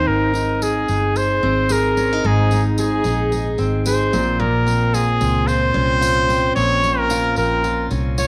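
Acoustic pop with a heartfelt, easy-going mood, this brief excerpt moves at 111 BPM in Ab major with a light sixteenth-note swing, shifting from Ab to Bbmadd9 at 4.1 seconds. A brilliant, punchy trumpet carries the melody up front over a picked steel-string acoustic guitar, also up front, whose finger squeaks come through clearly, while a dark, round, foam-muted electric bass anchors the low end and a jingly, dry tambourine joins at 0.3 seconds. Cassette-tape grit colors the trumpet and guitar, and a moderate spring reverb with small-room ambience gives the whole home recording an intimate, lived-in feel.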